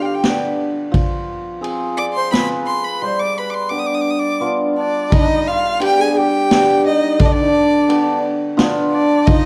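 Klezmer in 3/4 at 86 BPM, festive yet bittersweet, set in G phrygian dominant and moving from G to Fm and back to G in this brief cut from a longer piece. A close, up-front violin carries the melody with vibrato, portamento and a soft attack, taking a solo through the first 5.1 seconds, while a reedy, mellow accordion with slow beating plays a second line and a shimmering, ringing hammered dulcimer supplies accompaniment. A street-band drum kit with a boomy kick, high-tuned snare and dark ride cymbal enters at 0.2 seconds, all set in a moderate recital-hall reverb within a dark, warm production.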